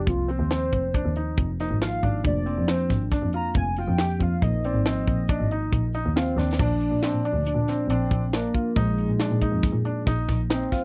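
A dry, close studio sound in a 1970s style frames this driving, bright stretch of progressive instrumental band music, cut from a longer piece at 138 BPM in 5/4 with a straight feel in Bb mixolydian. A hollow, nasal square-wave lead with chorus and vibrato carries the melody as an analog synth solo until 6.6 seconds. Beneath it sit a worn, slightly out-of-tune tine electric piano with phaser in the background and a clear grand piano playing arpeggios. A bowed double bass, focused and smooth-topped with vibrato, stands up front beside a crisp fusion drum kit with a high-tuned snare, tight kick and rolled-off top, which plays a fill just before the second section. A grainy tube shaker joins quietly at 2.2 seconds, and a ringing vibraphone with slow motor vibrato adds a second line from 6.2 seconds, as the harmony moves from Fm7 through Bb7/F and Bb7sus4 to Bbadd9 before returning to Bb7sus4.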